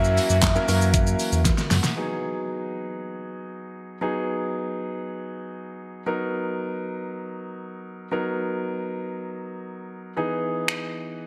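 Bright, 1980s-style digital production with a moderate plate reverb gives this energetic, driving dance-pop excerpt a glossy sheen. An airy, hollow bamboo bansuri with vibrato sits in the background over a very quiet detuned sawtooth pad, a deep sine sub bass with sidechain pumping, and an up-front, overdriven electronic drum kit of knocking kick, fat snare, hats, snaps, claps and shaker, which closes with a fill at 1.5 seconds. The intimate concert grand piano, with audible action noise, long sustain and its own sidechain pumping, plays from the very start and from 2.0 seconds carries the chords on its own, joined only by a brief drum hit at 10.7 seconds.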